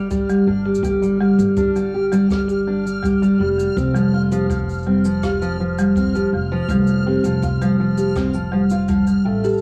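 A dark, fingerpicked steel-string acoustic guitar opens this playful folktronica piece with arpeggios, joined at once by a woody pizzicato upright bass and a faint, dreamy reversed texture that swells with a bright, detuned, granular shimmer. From 0.3 seconds, a round, mellow folk marimba played with soft mallets carries a second line up front, while a boomy kick and a brushed cabasa with rim click sit quietly in the background. Cassette tape lends a homespun, warm tint to the guitar, marimba, texture and percussion, with analog delay on the guitar and marimba and plate reverb on the guitar and texture, all heard in a small room.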